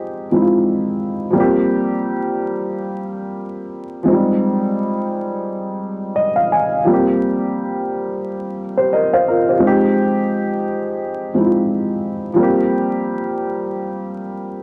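A dark, woody upright piano plays alone up front in this nostalgic, hazy hip hop fragment at 87 BPM in F minor, moving between Fm9 and C7sus4 with a gentle swing and a brief fill at 5.8 seconds, its slightly detuned, low-pass-filtered tone and audible action noise wrapped in a small room's wet reverb, worn cassette tape warble, pitch drift and vinyl crackle.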